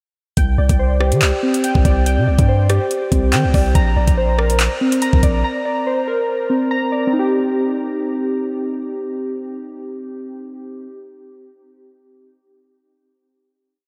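A dreamy, reverb-soaked mix frames this dark, menacing drill piece in C minor at 142 BPM in a half-time feel, where warbling, detuned lo-fi synth keys with chorus and delay loop a falling eighth-note arpeggio like a nostalgic sample, entering together at 0.4 seconds with an overdriven drill kit of knocking kick, metallic skipping hats, claps and rim clicks and with deep, sliding 808 sub-bass notes that follow the kick, before the drums and bass drop out near 5.4 seconds and the keys carry the hook into a closing C minor chord.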